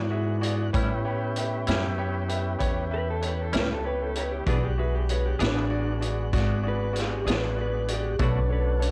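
A clean electric guitar solo leads this swaggering, soulful slow blues in 12/8, its slightly broken-up, compressed tone coming through a small old amp with subtle chorus and a lo-fi edge. A bright, polished concert grand piano and a smooth tonewheel organ turning through a slow rotary speaker fill in beneath, while a woody, dark upright bass sits up front, a punchy vintage drum kit enters at 0.4 seconds, and a hollow-body electric guitar with tremolo adds clean picked accompaniment from 0.7 seconds. The chords move from E7 to A7 and back, touching Bm7 near the end of this dry home cassette recording, which is cut from a longer piece.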